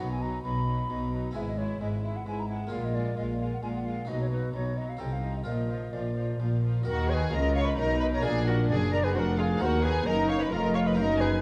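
Bowed double basses sit up front with a rich, gut-string tone, anchoring this stormy, driving baroque-style concerto movement in 3/4 alongside a warm cello section, while a pure wooden flute with a soft attack and vibrato carries the melody over a violin section playing it in the background. A second violin section adds its own line, and dark, nasal violas and a bright, plucked harpsichord with a single set of strings fill in the accompaniment, the bowed strings sharing a reedy, period-style sound. The wet recital-hall reverb surrounds this passage cut from a longer piece, which turns to new material at 6.9 seconds.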